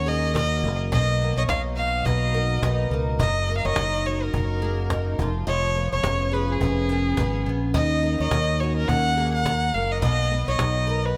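A warm, smooth violin with vibrato carries the melody from the start, its digital delay trailing over a shimmering, octave-doubled twelve-string acoustic guitar, a small, fingerpicked nylon-string guitar playing arpeggios in the background, and a round, punchy electric bass up front. This is easy-going, carefree acoustic pop at 106 BPM with a light 16th-note swing, moving through chords like D#m7, Bmaj7 and F#6, and a woody cajon with faint snares joins softly at 0.4 seconds. Light reverb and a bright 1980s-style digital sheen frame this short excerpt cut from a longer piece.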